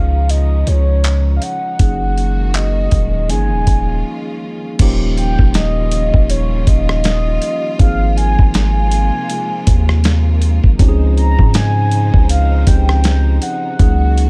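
Contemporary R&B at 80 BPM with a swung sixteenth feel, tender and dreamy, this clip sets a mellow, horn-like synth lead with chorus and tape echo over clean tine electric piano, lush bowed symphonic strings, a deep, long sine 808-style bass and a gritty, compressed soul sampler-style drum kit with thumpy kick, handclaps and rim click that enters at 0.3 seconds. A break falls between 4.0 and 4.8 seconds, all in a dry, close sound moving through chords such as Dbadd9, Eb9 and Dbmaj9.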